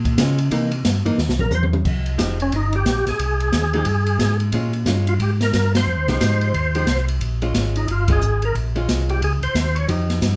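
A swung 179 BPM 4/4 groove in F minor drives this soulful, bluesy soul jazz organ trio excerpt, where a round, dark tonewheel organ carries the bass with chorus vibrato and slow rotary speaker, an acoustic jazz kit with boomy kick and dark cymbals plays up front and adds a fill from 1.2 to 1.9 seconds, a clean, hollow-body archtop guitar comps in compressed, picked tones, and a lightly overdriven, percussive tonewheel organ with key click enters on melody at 1.4 seconds, all set back in a wet club reverb with band accents at 5.7 and 8.0 seconds.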